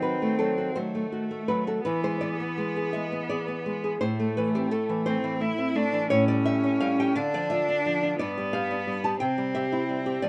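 A moderate studio reverb surrounds this brief excerpt of an elegiac, melancholic romantic duo in a rubato 6/8. A single bowed cello carries the melody with a clear, smooth tone and vibrato, while a small-sounding, fingerpicked nylon-string guitar plays the accompaniment up front. The harmony moves from a diminished chord through E and Am, then A7, Dm and G7 before settling on C at 9.2 seconds.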